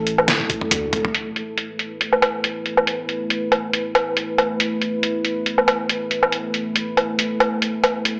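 A dark, heavy deep dubstep excerpt at 139 BPM in half-time opens on a moody, detuned sawtooth pad with chorus and reverb over a thick, saturated sub bass that stops at 1.0 seconds, while a gritty, pitched-down trip hop sampler-style kit of hi-hat, snare, toms and woodblock, muffled by low-pass filtering, plays a fill from 0.3 seconds alongside a brief knocking electronic kick, the mix sounding dry and small-speaker lo-fi with light digital ambience.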